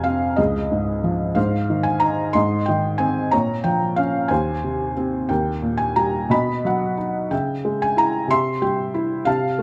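In a rubato 6/8 at 61 BPM, this melancholic, dark excerpt of lyrical classical solo piano in Ab major, tuned to A4 = 439 Hz, features a felt-muted upright piano, soft and intimate with a thin felt mellowness, placed up front by close, detailed microphones in light reverb, spanning Db2 to C6 over 9.6 seconds as its harmony drifts from Dbadd9 through Bbm and Eb to shadowed turns on B, Dbm and C.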